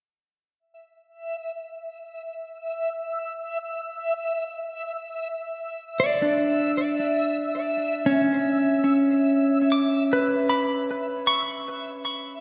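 A dark, compressed clean electric guitar plays picked arpeggios through tape echo from 6.0 s, joining a reversed, granular, detuned texture held on E5 that has been swelling with a soft attack since 0.6 s, as this weightless ambient excerpt moves from Dsus2 to C#m7 inside a wet concert-hall reverb.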